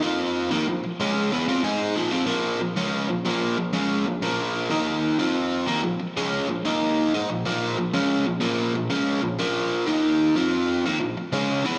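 Set in a straight 4/4 at 93 BPM, this rock passage, cut from a longer piece, has a cathartic, anthemic mood. A biting, overdriven electric guitar carries a solo from 0.0 to 11.8 seconds, picked and double-tracked so it sits up front with a warm edge. Its line ranges from Bb2 to Ab4 over a Bb5 chord, tuned to A4 = 441 Hz. Slapback echo and digital delay trail the guitar's notes, while a wet recital hall reverb with a 1.5-second decay gives the recording a big arena sound.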